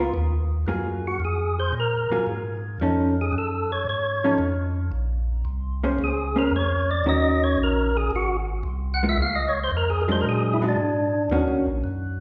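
Swinging jazz with a bluesy, soulful mood, where a fat, lightly overdriven percussive tonewheel organ carries the solo melody through a slow rotary speaker, a dark, compressed hollow-body electric guitar plays the accompaniment up front, and a piping tonewheel organ bass with key click and its own slow rotary sound moves under chords such as Db13, F7alt and Bbm9, set in the wet reverb of a church or concert hall.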